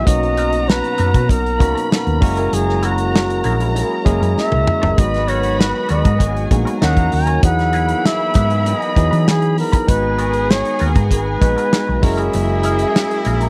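A breathy, intimate flugelhorn carries the melody up front from the first moment, over a dark, woody violin section, a barky tine electric piano, a very quiet percussive tonewheel organ holding chords, a round hollow-body bass and a clean semi-hollow guitar riff colored by wah and lush chorus in the background. This is bittersweet, smooth 1970s-style soul in G# minor at 98 BPM, with a snug, small-room drum kit driving a straight 4/4 groove through chords like Bmaj7, F#9 and G#m9. After a drum fill at 4.4 seconds, a distant, loose horn section adds clear stabs from 5.0 seconds, all captured in a dry, close studio sound.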